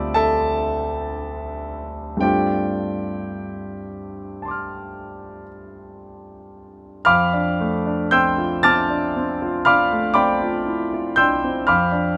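A clear concert grand piano opens on a Dm11 chord, its deep bass and long sustain setting a hazy, dreamy mood for this impressionist classical piece, which is cut from a longer work. Played solo in a slow, rubato 9/8 at around 36-41 BPM counted in dotted quarters, the piano spans D2 to A6, moving to G9sus4 at 2.2 seconds and settling on Dm9/F when a new section begins at 7.1 seconds. Close, detailed microphones keep the natural piano tone up front, with light reverb around it.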